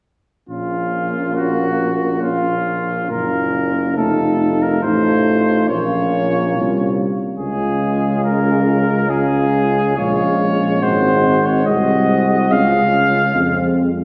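In a straight 4/4 at 70 BPM, this classical brass quintet passage in Bb minor moves with a heroic, solemn bearing, heard as a fragment cut from a longer piece. The clear trumpet carries the melody up front, ranging from F4 to F5 with light vibrato, while the mellow flugelhorn shapes a second line beneath it with its own vibrato. A soft-attacked French horn sits in the background as accompaniment alongside a warm trombone, and a present tuba with vibrato anchors the bass from F1 to F2. All five parts sound together from 0.5 s to the close near 13.9 s, following a harmonic path from Bbm through F7, back to Bbm, then to Db, Ab7 and a return to Db at 12.5 s. A wet concert hall reverb places the ensemble further back in the room, lending the trumpet, flugelhorn and horn a distant, roomy quality.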